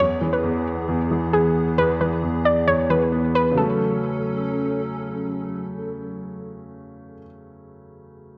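A half-time feel in 4/4 at 134 BPM gives this hip hop excerpt a slow, loping gait, set in F# minor with a menacing, eerie mood. A soft, round pluck carries the melody between G#4 and D5, its mellow, fast-attack, decaying notes sitting up front with a chorus shimmer until about 4.9 seconds. Beneath it, a dark baby grand piano plays the accompaniment in the low and middle register, its long sustain ringing on until 8.4 seconds. A hollow, flute-like pad holds sustained chords with a soft attack and long release, thickened by ensemble chorus and a vintage, wavering character, lasting until 7.2 seconds. The harmony moves from E to F#m, and the whole recording wears a light digital reverb and the wobbling pitch drift of worn cassette tape.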